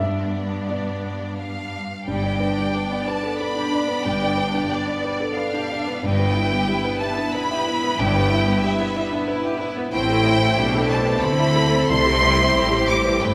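Uplifting and tender, this cinematic film-score passage for orchestra moves in 3/4 with a rubato feel. Up front, a rich violin section carries the melody high in its register, its bowed tone focused and full of vibrato, while a second violin section sings a clear, intense line beneath it. A baby grand piano supplies intimate accompaniment with audible action noise and short sustain, joined by a smooth, even viola section sitting in the background. A cello section with soft attack and expressive vibrato holds the bass, and a lush double bass section adds a lower foundation from 2.1 s. The harmony moves from G through Em/G and Am to C, and the ensemble sits in the wet bloom of a scoring stage reverb.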